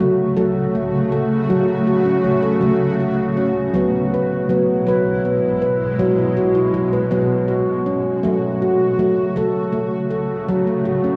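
Hypnotic and meditative, this world piece for tuned percussion moves in a slow 6/8 at 54 BPM in F# minor, drifting from F#m to E and back to F#m at 8.2 seconds. A ringing, bright handpan with the tone of nitrided steel plays arpeggios up front with sharp finger strokes. Beneath it a cloudy, detuned granular pad with a slow attack and its own reverb holds sustained chords, all set in a dark production with a wet scoring-stage reverb and a touch of small-room ambience.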